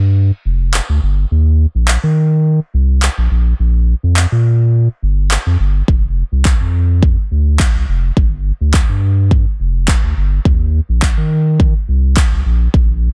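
Dance-pop with a driving, bittersweet mood, built on a round, sine-toned sub bass that pumps against the sidechain from the first moment, joined at 0.7 s by an up-front, layered electronic deep house kit of deep kick drum and handclaps, all set in a digital ambience with a dense, heavily limited modern master in this short cut from a longer piece.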